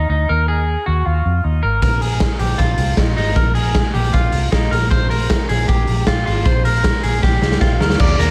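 Breezy and nostalgic, this short excerpt cut from a longer jangly indie pop piece moves at 156 BPM in 4/4, with a twangy, slightly broken-up electric guitar through a small old amp picking up-front arpeggios with slapback echo over a round, foam-muted vintage fingered bass, joined at 1.8 seconds by a gritty, saturated garage drum kit with a punchy kick and medium-tuned snare that plays a fill from 7.2 seconds, all under light reverb as the chords move from Eb5 to Bbsus4 and Gm.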